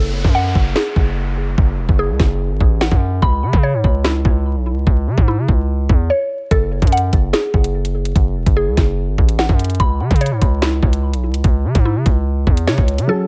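A distorted, aggressive 808-style bass hits up front with a saturated, heavy weight beneath an ominous, tense half-time drill groove, as the electronic drum kit's knocking kick, sharp snare and warm hats drop out briefly from 6.1 to 6.5 seconds. A woody, round mallet-like synth pluck spins dark arpeggios through chorus, phaser, filtering and tape echo over a moody minor progression, while a downlifter sweeps through the opening seconds and vinyl crackle hangs over the whole piece. At 13.1 seconds a mellow, boxy concert grand piano enters just as this excerpt of a longer track is cut off.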